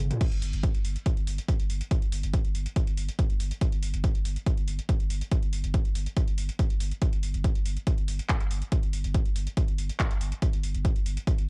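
Driving peak-time techno at 141 BPM in straight 4/4, this short excerpt cut from a longer piece carries an industrial, driving mood and sits slightly sharp of standard tuning. It opens on a break with a drum fill at 0.0 s, and a punchy electronic kick enters at 0.2 s, sitting up front and loudest in the mix with a layered, produced character. Beneath it, a deep, thick sub bass centred on G1 sustains with a fast attack, its triangle tone pushed through overdrive, a low-pass filter and sidechain pumping. The techno drum kit adds crash cymbal, handclaps, toms and metallic hats at a lower level, and like the kick it was re-recorded in a small room and carries a cassette-tape colour. The recording is dry, with little reverb, and was made at home on cassette.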